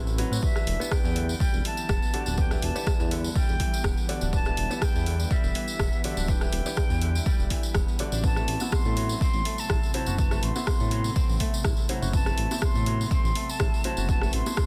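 Afro house at 123 BPM in A dorian, this hypnotic, spiritual excerpt moves from Em7 to Am69 at 8.2 seconds over a straight 4/4 pulse. A punchy, layered electronic kick sits up front in the mix, while an afro-pop drum kit adds produced hi-hat and rim click, with a jingly tambourine alongside. A dark, smooth synth bass with a fast attack and vibrato carries sidechain pumping and drops out at 14.4 seconds. Bright, ringing kora arpeggios and soft stabs from a felt-muted upright piano both carry sidechain pumping and digital delay, and alongside them an ethereal, detuned pad holds sustained chords very quietly with chorus and built-in reverb. From 0.4 seconds a distant silver concert flute sings a pure, tongued melody with vibrato and its own delay, all within a dense, heavily limited modern master.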